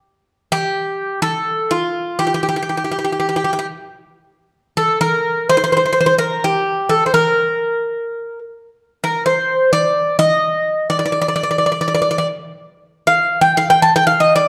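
Hypnotic and soulful, this short Turkish passage in a straight 10/8 metre features a lone picked acoustic Greek bouzouki, playing solo from 0.5 s to 14.5 s and sitting up front in the mix. Its double strings, some doubled at the octave, give a mellow yet metallic ring across a range from F4 to A5. A wet recital-hall reverb and a dark production surround the instrument in this fragment cut from a longer piece.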